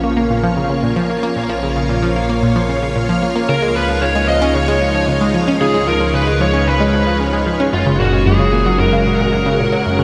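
A smooth, dark, overdriven electric lead guitar enters at 3.5 seconds, its picked melody set up front and trailed by delay. This cosmic, luminous slice of ambient, sequencer-driven space music is cut from a longer piece, and everything sits in a dreamy mix soaked in a huge reverb with an 8.1-second tail. From the opening, a lush vintage string machine holds sustained chords with a soft attack, long release and shimmering ensemble chorus. An analog pluck repeats a nasal, detuned sawtooth riff with a bright, fast attack, colored by chorus, phaser and delay. A fat analog bass fades in across the whole passage, thick and decaying under a filter sweep, while the harmony moves from A#m to C#add9 and then F#add9 at 7.7 seconds.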